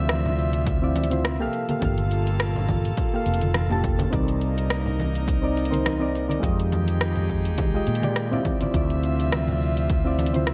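Sunset chillout at 104 BPM in C dorian with a wistful, relaxed 16th-note swing, where round, warbling electric-piano-like synth keys with chorus and digital delay and a breathy, detuned pad with slow attack move through Dm9, Gm9, Cm9 and Fm9 over a growly, up-front fretless electric bass, while an overdriven deep house kit of hi-hat, rim click and shaker arrives at 0.1 seconds, background congas with a thin, damped skin at 0.3 seconds, and a punchy overdriven electronic kick at 0.7 seconds, all under light reverb.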